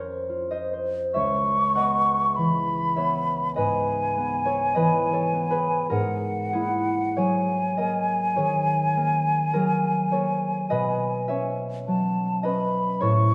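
A mellow, hollow silver flute carries the melody from 1.1 seconds, airy and up front with vibrato and tongued notes, floating over a concert harp that opens the excerpt alone with thumb-plucked, ringing tones. This hazy, mysterious impressionist duo moves with a free rubato feel through chords such as Bbmadd9, C#m7, G#9sus4 and Badd9. A wet concert-hall reverb gives the pair a spacious, churchlike glow, and the recording is cut from a longer piece.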